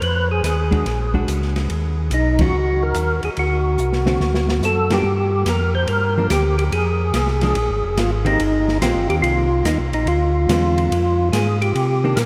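Swung eighths in 4/4 drive this soulful, bluesy soul jazz organ trio fragment, with a fat, percussive tonewheel organ carrying the melody through a slow rotary speaker and chorus vibrato while a mellow, round second organ voice plays the bass lines up front with key click. An acoustic drum kit with dark cymbals and a boomy kick keeps time, and a dark, clean hollow-body electric guitar adds picked, compressed comping in the background from 0.7 s. The band hits accents at 2.3 s and 4.8 s, with a drum fill leading into the second, and a cathedral-sized reverb drenches everything in a vast, echoing space.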